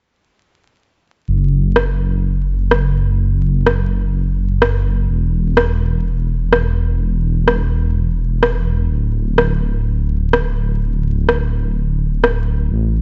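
Wistful and ghostly, this excerpt of swung future garage pairs a deep, rumbling detuned saw bass with tube saturation, entering at 1.3 seconds, with an overdriven, up-front electronic rim click that joins at 1.8 seconds, all set in a dry room beneath a veil of vinyl crackle and a dulled top end.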